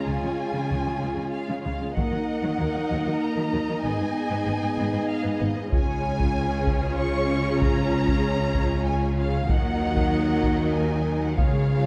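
Heavy-stick taiko drums enter at 2.0 seconds alongside a lush, vibrato-rich orchestral film cue in 3/4, where a soft-attack violin melody sings over a second violin line, a focused viola accompaniment, sustained chords from a dark French horn section and a background string section, and woody double basses and smooth cellos holding the bass, all set in a moderate scoring-stage reverb with a dark, epic mood and a huge, bright reverse cymbal barely audible at 11.4 seconds.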